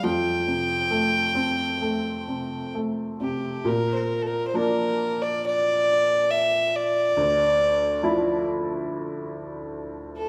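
Longing and mournful, this short cut from a longer Celtic slow air unfolds with a free, rubato feel as a single bowed fiddle carries the melody in a rich, biting, earthy voice, placed up front. Beneath it, a felt-muted upright piano accompanies throughout, its soft, intimate tone sitting close as the harmony moves from Fadd9 to Bb at 3.7 seconds, where a second section begins, and on to Dmadd9. A moderate recital-hall reverb gives both instruments a gentle sense of space.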